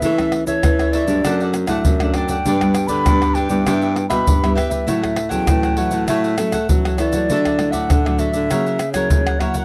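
Samba and choro in D major at 99 BPM, sunny and playful, where an airy wooden flute melody with a crisp attack and a warm, punchy baritone saxophone bass line with a smooth top both carry vibrato over picked cavaquinho, full-bodied fingerpicked nylon-string guitar with audible finger squeak, and up-front tube shaker, tight surdo, pandeiro and tamborim, all captured in a dry, close 1970s-style studio sound.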